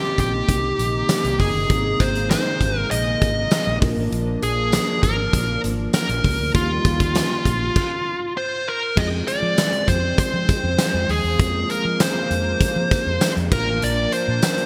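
This moody, nostalgic slice of 1980s-style pop opens with a dark, smooth overdriven lead guitar carrying the melody up front, its tone trailed by delay, over a mellow tine electric piano and a soft-edged, detuned sawtooth pad thickened with chorus, both sitting in the background. A moment later at 0.2 seconds a huge arena drum kit arrives with a fat snare, punchy kick, bright cymbals and gated reverb, joined by a round, foam-muted fingered electric bass and a very quiet, jingly tambourine. The chords move from Cm7 through Abadd9 and Bb to Ebadd9 before a stop at 7.8 seconds briefly halts the groove. From 9.0 seconds a new section settles on Fm before turning to Bb near the close of this excerpt, which is cut from a longer piece. The bright digital production places the drums and guitar forward in a light, studio-room ambience.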